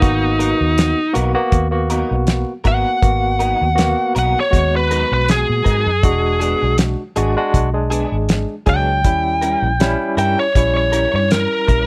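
A biting, overdriven lead guitar sits up front and solos throughout this brooding, mournful fragment of a straight-eighth soul blues, moving at 80 BPM in 4/4 with a light swing on the sixteenths. Beneath it, a barky tine electric piano plays accompaniment through a combo amp with a medium tremolo, while a vintage muted fingered bass supplies a dark, round, foam-muted low end. The cloth-damped kit of hi-hat, kick and snare sounds thuddy and dry, with a fat snare, a tight kick and a rolled-off top, and it sits just as far forward as the lead. From 0.4 seconds a clean, direct-recorded electric guitar adds compressed stabs coloured by ensemble chorus, placed lowest in the mix. The harmony in G# minor moves from G#m9 to E7 at 6.0 seconds and then to D#7b9 at 9.0 seconds, and the recording stays dry with little reverb.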